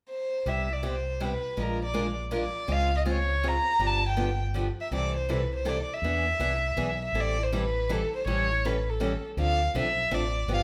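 A dark, intimate bowed violin carries the melody from 0.1 seconds with light vibrato, a soft sul tasto attack and a smooth top, leading a lively, playful acoustic string swing piece in 3/4 in the jazz manouche style. At 0.5 seconds it is joined by a bright, boxy parlour steel-string guitar picking the accompaniment over chords such as Cmaj7, Dbmaj7 and Dm9, and by a round, mellow fretless electric bass. All three sit up front as a band playing live in one room with a moderate large-studio reverb.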